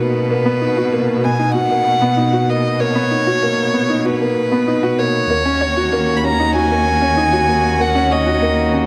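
A straight 4/4 pulse at 96 BPM carries this short piano-and-strings electronica excerpt, cut from a longer piece, with a luminous, tender mood. An upright piano with a woody, short-sustained tone repeats a riff with a touch of delay from the start, while a lush, bowed cello section with focused vibrato holds down the bass line. Up front, a solo violin sings the melody in a dark, intimate voice, played sul tasto with a soft attack, light vibrato and its own delay. At 5.3 seconds the harmony moves from Bmaj7 to D#m7, and a chamber string quartet, one player per line, enters beneath with sustained chords in a nasal, reedy gut-string tone of period style. A moderate concert-hall reverb and a small-room ambience frame the parts through to the end at 8.9 seconds.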